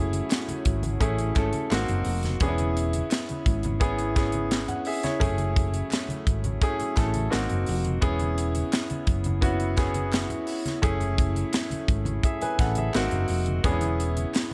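A brilliant, up-front concert grand piano accompanies this short cut from a lush, bittersweet 1970s-style soul piece in F# minor at 86 BPM, cycling through F#m7, G#7 and C#m7/E over a dry, tight funk drum kit with a high-tuned snare, a dark, round hollow-body electric bass, mellow French horns sustaining chords in the background, low-tuned congas and faint, distant handclaps, all set in studio reverb for a cinematic feel.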